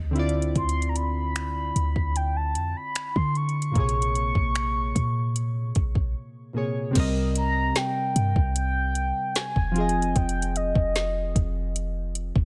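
Contemporary R&B at 75 BPM in 4/4 with a straight feel, this sensual, moody passage is cut from a longer piece. Analog keys with a round, detuned square-and-sawtooth tone carry the accompaniment through chorus, with a filter sweep and quickly decaying notes, while a clean, sine-like 808-style bass sits deep and boomy underneath. An electronic drum kit enters at 0.2 seconds with a soft kick, woody snare, metallic hi-hats, finger snaps and crash cymbal, all carrying a tape-tinged character. A mellow, horn-like synth lead blending sawtooth and triangle tones comes in at 0.6 seconds, its soft attack and sustained notes colored by vibrato, chorus and digital delay. The harmony moves from Dm7 to Bbm7, then after a break at 6.2 seconds the second section begins at 7.0 seconds on Cm7 and settles on Fm7. The sound is dry and close, with every part placed up front.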